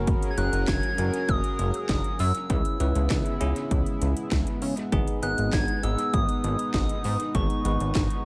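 A straight 4/4 beat from an overdriven house kit, with punchy kick, cracking snare, handclaps and metallic hi-hat, drives this cool, nocturnal synth-pop excerpt, where a glossy chorused synth bass sits up front beneath a shimmering pulse-width pad and a bell-like tine electric piano over chords moving from F#add9 to C#m7 to G#m, while a round, warbling FM synth lead enters at 0.3 seconds with dub echo in an echo-heavy mix.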